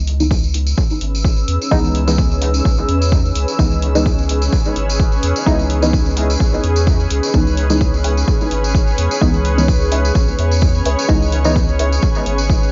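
Hypnotic and nocturnal, this dub techno excerpt rides a punchy, up-front kick drum, an analog electronic hi-hat and a jingly vintage tambourine, all over a round sine sub bass and a single C#m7 chord. Muted sawtooth chord stabs, detuned and mellow, pulse through chorus, phaser, cassette tape colour and dub echo. A blurred granular pad joins at 1.0 seconds, and a second stab riff surfaces in the background at 8.0 seconds, all beneath sidechain pumping, light reverb and a dark top end.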